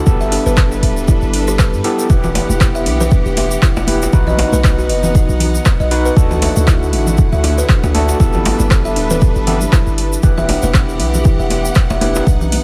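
A small-room ambience surrounds this driving, hypnotic afro house excerpt, anchored by a deep, overdriven electronic kick up front, while sidechain pumping moves the boomy 808-style bass, the lush bowed string chords, the woody, buzzing kalimba arpeggios with delay, and the barky, gritty electric piano stabs with fast tremolo and delay. An afro-pop kit of handclaps, metallic hi-hat and rim click sits alongside a grainy tube shaker, and from 2.2 s ringing high-tuned congas and a medium-tuned djembe join in the background. The swung groove cycles through Gadd9, Em, B and D before returning to Gadd9 and Em.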